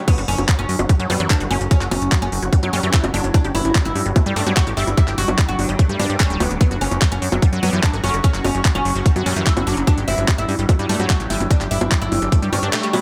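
A tight, up-front electronic kick drives this hypnotic, alien psychedelic trance excerpt at 147 BPM in a straight 4/4, joined by a tape-warm garage kit of crisp hi-hats, bongos, handclaps and crash cymbal, and a punchy, funky sawtooth analog bass with ring modulation and a filter pluck. Over the harmony alternating between F#5 and G5, a woody, fretless oud carries the melody through phaser, sidechain pumping and tape echo, while a lush, detuned unison pluck sits in the background with delay and a nasal, wobbling vowel-sweep bass adds a very quiet second line. A very quiet drone with moving overtones and a cloudy, blurred granular pad linger in light digital ambience, and the kick drops out at 12.7 seconds on a band accent.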